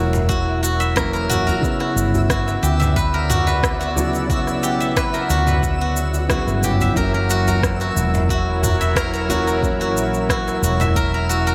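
A straight 4/4 groove of deep house rim clicks, shakers and toms in gated reverb, a deep electronic kick and a very quiet djembe with metal rattles drives this mystical, meditative organic downtempo excerpt, where a dark, round fretless bass and a mellow, felt-muted upright piano pump under sidechain beside a detuned sawtooth analog pad with chorus and tremolo, while an up-front, silvery steel-string zither rings out fingerpicked arpeggios through digital delay and a twinkling granular shimmer sparkles in the background over F#7 and Gmaj7 chords, all in bright 1980s-style digital production with a moderate plate reverb.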